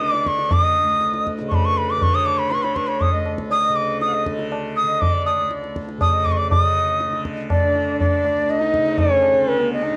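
A straight three-beat pulse at 120 BPM carries this radiant, serene passage of Hindustani classical music, cut from a longer piece and tuned a little below standard pitch, with A at 437 Hz. Up front, a bamboo bansuri leads the melody with an airy, reedy tone, crisp attacks and vibrato, while a single bowed sarangi traces a smooth second line beneath it, gliding between notes with light vibrato and the halo of its sympathetic strings. A softly plucked tanpura sustains a buzzing, shimmering drone underneath, and a high-tuned tabla rings close and dry until it stops at 9.7 seconds. The music moves into a new section at 6.5 seconds. The whole recording sits in light reverb and carries the worn, warbling pitch drift of old cassette tape.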